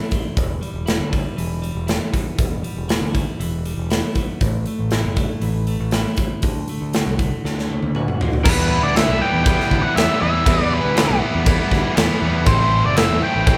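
A clean, dark-toned electric guitar opens this cathartic, dark quiet-loud alternative rock excerpt in E minor at 119 BPM, its picked arpeggios joined almost at once by a punchy, up-front acoustic drum kit with bright cymbals and a growling, overdriven fingered bass, moving through Em, Am and D before a drum fill at 7.4 seconds. At 8.4 seconds the arrangement erupts as two bright, overdriven riff guitars sit in the background beneath a dark, fuzz-soaked octave lead melody, while the clean guitar drops out. The band sounds like it is playing live together in one room with light reverb.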